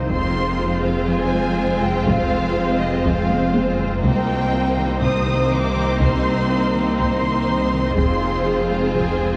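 Heard through worn, warbling old cassette tape with a drifting pitch and set in a moderate scoring-stage reverb, this cinematic cue blends orchestra and electronics in a brooding, vast mood at 122 BPM in 4/4. A lush, bowed violin section carries the melody high above, smooth, even and vibrato-rich, while a second violin section adds an expressive, soft-attacked line beneath it, and focused violas and a warm cello section sit further back. A dark, detuned sawtooth bass rumbles and beats under the strings, and a cloudy granular pad, blurred by its own reverb, holds sustained chords in the background. A very quiet, round, tine-like synth pluck with chorus traces arpeggios, and a vintage, band-limited taiko ensemble struck with hard sticks pounds in the distance, breaking into a fill from 3.3 to 4.0 seconds. The harmony moves from F minor to C minor seventh at 4.0 seconds and back to F minor at 8.0 seconds in this fragment cut from a longer piece.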